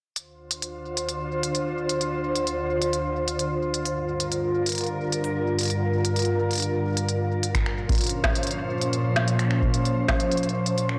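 A glassy, ethereal FM pad sits up front in this melancholic, intricate IDM piece cut from a longer work, holding slow-attack chords with long release, ensemble chorus and its own reverb as the harmony moves from Dm7 to Gm7 to Bbmadd9. Alongside it, an organic electronic kit of finger snaps, smooth hi-hats and a woody snare keeps a straight 4/4 pulse. A deep, tape-warm analog kick joins from 7.5 to 10.2 seconds, all set in a moderate plate reverb on a blown-out, overdriven recording.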